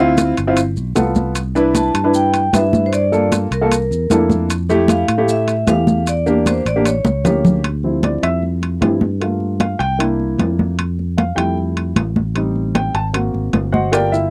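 A dark, mellow baby grand piano with audible action noise and a round, punchy fingered electric bass open this fiery, sultry Afro-Cuban jazz excerpt in D minor at 153 BPM. Damped, high-tuned congas, ringing metal-shell timbales and grainy maracas join almost at once, and at 1.8 seconds a dry, close-miked vibraphone, played with medium hard mallets and its motor off, carries the melody with a metallic ring. After a drum fill, the intimate, tape-coloured piano takes a solo from 7.6 seconds over rich extended chords such as Dm11, Gm9 and G#9, all in a moderate booth ambience from a home cassette recording.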